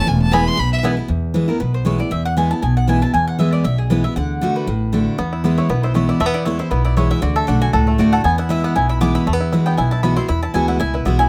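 A woody, double-strung mandolin takes the lead from 1.1 s in this joyful, driving bluegrass excerpt in E mixolydian at a swung 235 BPM, following a brief opening solo from a clear, airy-bowed fiddle, while a full-bodied, up-front picked acoustic guitar with finger squeak and a warm pizzicato upright bass carry the accompaniment throughout, and a twangy, fingerpicked banjo returns from 5.2 s, all captured with close, detailed microphones and light reverb.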